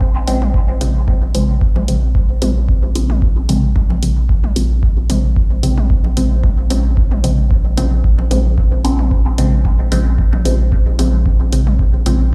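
This dub techno excerpt, cut from a longer piece, feels hypnotic and nocturnal, with a light swing on the sixteenths as it rests on a single Bbm7 chord throughout. A filtered dub chord stab carries the harmony: muted, detuned sawtooth and square-wave tones with a sub octave, shaped into short plucks that evolve through a phaser, sidechain pumping and dub echo. Beneath it sits a round analog bass, a sine-like, sustained tone held up front and pumping under sidechain compression. The deep, tape-warm electronic kick drum, re-recorded in a large room, runs from the start to 11.9 seconds. Layered dark hi-hats enter at 0.3 seconds, and electronic toms and congas join at 0.4 seconds with their own pumping and dub echo, all set in a small room ambience. The whole mix sounds as if played through a big sound system in a bare room.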